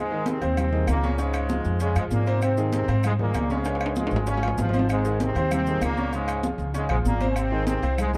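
Festive and danceable, this short salsa excerpt moves at a brisk 194 BPM in straight 4/4, in Ab major, rocking steadily between Ab and Db chords. A brilliant trombone section carries the melody up front, tight and pop-styled with a light vibrato. Beneath it, a clear, polished baby grand piano supplies the accompaniment, and an upright bass played pizzicato on gut strings sits forward in the mix with a dark, thumpy tone. High-tuned congas with a thin-skinned, vintage snap, ringing agogo bells and timbales, and woody claves in a live room stay in the background, while grainy, mellow maracas are heard close and dry. A drum fill from 3.7 to 4.9 seconds breaks up the groove, and the whole piece has a dark, warm production with light reverb.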